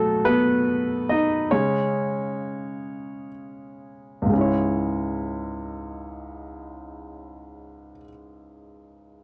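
Aching, melancholic pop in C# minor, this short cut from a longer piece moves at 39-49 BPM in dotted-quarter 6/8 and is tuned to A4 = 437 Hz, with a clear, polished baby grand piano sitting up front as the accompaniment, ranging from C#2 to D#5 and playing alone while the tempo slows through the first 4.3 seconds over B7 and C#5 before settling on C#m, all within a dry, close 1970s-style studio sound touched by moderate reverb.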